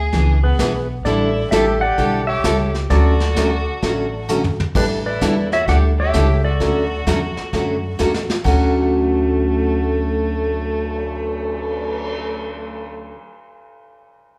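A wet, roomy studio reverb wraps this down-home, swinging western swing snippet played live in one room: a clean, twangy lap steel carries the melody with volume swells and slide, a distant, focused fiddle with light vibrato bows a second line beneath it, a woody pizzicato upright bass sits up front beside a brilliant, picked dreadnought acoustic guitar strung with old strings, and a dark, rolled-off brush kit keeps the swing moving, adding short fills at 4.3 and 8.0 seconds.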